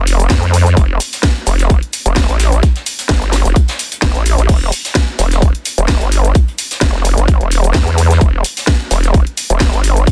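A nasal, wobbling bass with a vowel-like formant sweep leads this bouncy, swaggering bass house excerpt, sitting up front from the first moment and ranging from E1 to F2 in E phrygian, its tone saturated, chorused and pumping against the kick. The groove moves at 129 BPM in 4/4 with a light swing on the sixteenths. An electronic kick drum arrives at 0.3 seconds, tight and up front, while a layered garage kit supplies a cracking snare, hats, shaker and crash cymbal. Underneath, a very quiet jazz brush kit adds a distant, roomy hi-hat and snare with a rolled-off top. The whole piece sits in a small room reverb with a dense, heavily limited modern master, and the clip is cut from a longer track.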